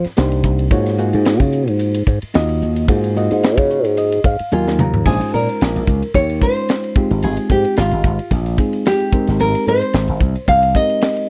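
Driving and funky, this brief cut of electric jazz fusion moves at 111 BPM in 4/4 with a light sixteenth-note swing, opening on a slap bass growling through an envelope filter alongside a crisp, airy drum kit with a high-tuned snare and punchy kick, while a reedy, worn, slightly out-of-tune electric piano comps through its built-in speakers over sus4 and extended chords. The electric piano plays a fill from 3.4 to 5.1 seconds, overlapping a short drum fill, and the nylon-string guitar enters at 4.5 seconds to carry the melody, dark and full-bodied with audible finger squeak and a slapback echo. The dry, close 1970s-style studio sound keeps the bass, drums and guitar up front as the harmony shifts through Bbm11, Fm9/Ab and Abmaj7.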